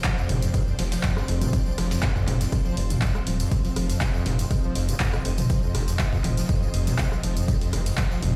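A driving 121 BPM groove with a light 16th-note swing anchors this trippy, hypnotic acid house excerpt, built on a punchy, overdriven electronic kick up front, a dry analog drum machine with handclaps, hi-hat, rim click and toms, a very quiet sampler-style kit with a fat snare, and a jingly, close tambourine. A squelchy, distorted acid bass riff with a resonant filter sweep, chorus, 12-bit grit and delay rides over a round, deep analog bass that enters at 0.3 s, both carrying sidechain pumping. Lush, vintage string-machine chords with slow attack and ensemble chorus hover behind, all set in a stone room reverb that sounds like a big sound system in a bare room.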